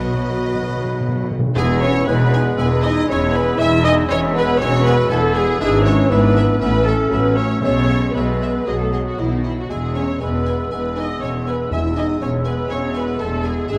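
A straight 4/4 pulse at 119 BPM drives this graceful, lively classical-period orchestral movement in E major, cut from a longer piece, where a vibrato-rich violin section carries the melody over a second line from more distant violins, a hollow flute ensemble, a mellow oboe and a background clarinet, while smooth, even violas and a warm bassoon accompany, a French horn section holds sustained chords, focused cellos and up-front double basses anchor the bass, and round, dry timpani on soft mallets open with a fill in the first 1.6 s before returning briefly at 7.6 s and 11.7 s, the whole ensemble set in a moderate scoring-stage reverb.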